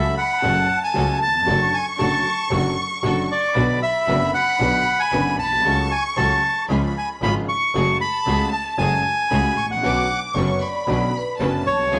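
A reedy, bright bandoneon carries the melody up front in this melancholic, tense tango passage, cut from a longer piece and played with a rubato feel in 4/4. Just behind it, a clear violin section bowed with vibrato adds a focused second line high above, while a concert grand piano supplies intimate accompaniment with deep bass and audible action noise that lends it a vintage character. A rich, distant double bass, bowed by one player with smooth, even vibrato, anchors the low end. A dark string section with a gut-string, period-style tone sits in the background, adding stabs in a middle register. Near the close, at 10.3 s, a metallic, ringing vibraphone struck with medium hard mallets slips in briefly with a close-miked, dry second line, all set in light reverb.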